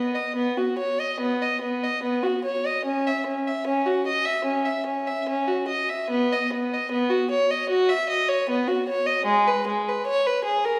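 Classical baroque-style suite movement for solo violin, flowing and radiant at 75 BPM in a rubato 4/4 in B major, tuned to A4 = 438 Hz: a single bowed violin with a reedy gut-string tone and light period-style vibrato ranges from G#3 to E5 up front throughout this 10.8-second excerpt, set in a wet recital-hall reverb heard from further back in the room.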